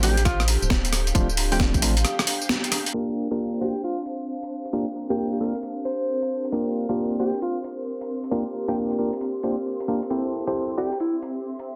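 A swung two-step garage groove drives this moody, soulful clip from a longer piece: a gritty, overdriven breakbeat kit of hi-hat, rim click, snare and tambourine sits up front, while a tight, layered electronic kick and a rubbery, bouncy square bass are heard only in the opening two seconds. A breathy, distant alto saxophone carries a mellow, jazz-style melody with vibrato and tape echo, set against hollow, percussive organ stabs treated with chorus and echo. In the background, a silky string machine and a nostalgic, lo-fi, phaser-tinged pad pump with sidechain as a filter sweep moves across the strings from 2.9 s, all within light digital ambience and a dense, heavily limited master.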